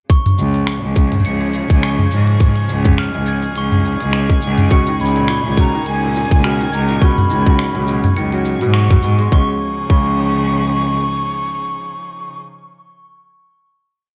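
A dark, small-room production frames this playful folktronica piece in Db mixolydian at 104 BPM, where a tight electronic kick and a clicking found-sound kit of crisp hats, cabasa, low tom and finger snaps sit up front with a lightly swung 16th feel. A smooth bowed cello carries a dotted-rhythm bass beneath background string-quartet chords, while a bell-like glockenspiel with soft plastic mallets repeats a tape-echoed 12-step loop and a reversed, granular swelling texture holds a high note. From 4.7 s a breathy flute states hook phrases through tape echo over fingerpicked, ringing kora arpeggios in a 6-step loop, and at 9.3 s the groove gives way to a final chord that lasts until 11.6 s.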